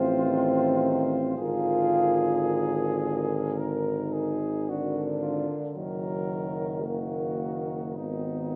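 A warm euphonium sits up front with a light vibrato, carrying the accompaniment through the whole of this solemn, elegiac brass band excerpt, which lasts 8.6 seconds. Above it, a mellow flugelhorn sings the hymn-like melody with classical vibrato, while a French horn section with a vintage character shapes a mellow second line in the background. A trombone with a gentle attack adds further accompaniment from a distant, roomy position. A clear tuba anchors the low end up front. The music moves at a slow, rubato 55 BPM in 4/4, its harmony passing from F7/A through Bb7/Ab and Ebm/Gb to Fm7b5/Ab, all bathed in a moderate recital hall reverb.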